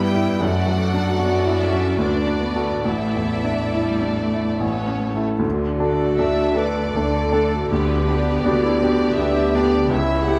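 In a rubato 3/4 at roughly 66-83 BPM, this passionate, lyrical classical passage in D major unfolds as a short cut from a longer piece. A clear baby grand piano carries the melody up front, intimate and natural, with long sustain and audible action noise, while a chamber violin section shares the tune above it with intense vibrato. A second violin section adds a rich, smooth second line, and in the background a studio viola section supplies close, lightly vibrating accompaniment over a cello section's even, rich bass. At 5.4 seconds a distant symphonic double bass section joins with a light vibrato, and at 5.5 seconds a mellow, roomy solo clarinet enters with a soft attack to add another second line. The harmony moves from D/F# through D and Asus4 to A, then settles on D and G/D, all set in a moderate concert hall reverb.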